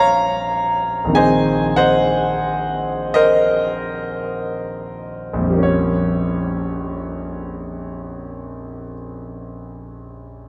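A clear, polished grand piano plays alone in an impressionist classical vein, its rubato lines in a slow 6/8 sounding up front within a vast, echoing cathedral reverb, moving through nocturnal, mysterious harmonies from Bbm9 to Ab9/Bb, slowing down over the first 5.6 seconds before settling onto Bbm6 in a brief fragment cut from a longer piece.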